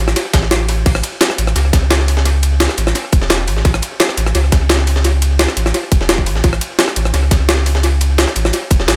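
Liquid drum and bass at 172 BPM in A major, this excerpt has a warm, lush mood, anchored by a deep, round sine sub bass with tube saturation that sits up front from the start. Two gritty, compressed sampler-style kits enter next: at 0.1 seconds a pitched-up jungle kit with a high-tuned snare, crash, ride, hi-hat and rim click, tape echo and studio reverb, and at 0.2 seconds a quieter breakbeat kit at natural pitch whose filtered snare and ride cymbal add texture beneath. A tight, layered electronic kick follows at 0.3 seconds. The mix is echo-heavy with light reverb overall.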